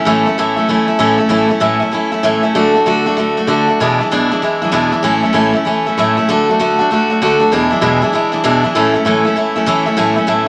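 A picked steel-string acoustic guitar carries this short rock excerpt entirely on its own, sitting up front with the full-bodied ring of a dreadnought and the warm sound of fresh strings. The mood is rollicking and retro, with a swing on the eighth notes giving the fast 4/4 pulse a bouncing, loose-limbed drive. The guitar ranges from a low E2 up to F#4, cycling through A, D and E7 twice before landing back on A at 8.7 seconds. A moderate, large studio reverb lends the instrument a sense of space around its sturdy tone. Cut from a longer piece, the passage runs about 10.5 seconds.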